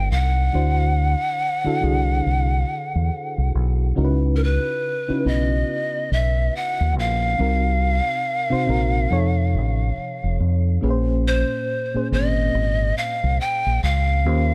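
A dark, warm small-room sound frames this 14.5-second neo-soul and R&B excerpt, moving at a slow 70 BPM in 4/4 with a swung sixteenth-note feel and tuned to A4 = 437 Hz. A breathy, bright bamboo pan flute carries the melody up front with vibrato and a crisp, chiffy attack. A soft, round FM electric piano warbles beneath it with chorus and tremolo, while a deep, dub-style fingered electric bass sits up front and round through soulful harmony moving from Abmaj9 and D9 through Dbm11, Cm7b5 and F7b13 to Bbm9.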